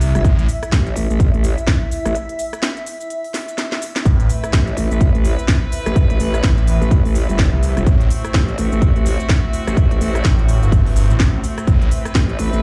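A punchy, up-front electronic kick and a layered house kit with a cracking snare, crisp hats, rim click and shaker open this swaggering, bouncy bass house cut in A dorian at 126 BPM, swung on the sixteenths over an Amadd9 chord. Beneath them a growling, wobbling bass with chorus and overdrive pumps against the kick, joined briefly by a swirling phased saw bass that drops out after the first half-second, while a cloudy granular pad holds a single high note, blurred and mellow in its own reverb. A break arrives at 2.2 seconds, capped by a drum fill before the phased saw bass returns at 4.1 seconds, thick, detuned and tube-saturated. At that same moment a chamber string section enters with sustained, reedy, gut-string chords in a period style, ducking with the sidechain like the basses and pad. The drums carry a small room reverb, and the whole mix sounds as if played on a big sound system in a bare room, bathed in large studio reverb.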